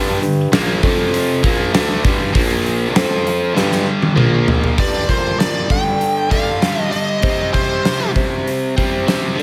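Over a straight 4/4 pulse at 98 BPM, this swaggering, brooding classic rock cut in G minor sets a double-tracked, distorted electric guitar riff with slapback echo and a mellow bassoon bass line with light vibrato against a gated 80s drum kit with a fat snare and tight kick that enters at 0.2 seconds and rolls through a fill from 3.6 seconds, before a biting, overdriven lead guitar takes the melody from 4.8 to 8.1 seconds, all in a big arena sound with lush hall reverb.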